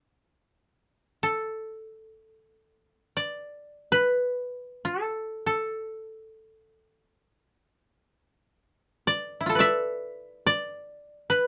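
A bright, woody koto played with fingerpicks sits up front and alone in free time, moving between E4 and E5 through a short meditative, solitary passage of Japanese traditional chamber music cut from a longer piece, with a light reverb around it.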